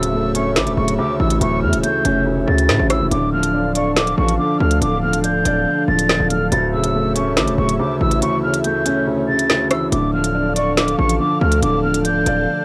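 A breathy, close-miked concert flute melody leads this cold, ominous half-time drill cut from a longer piece, over a felt-muted upright piano with audible action noise, an airy chorused pad, a saturated, heavy 808-style bass and a tape-colored drum kit of crisp hats, rim clicks and woody snare, with the kick muted from 8.2 to 9.9 seconds in this dry cassette home recording.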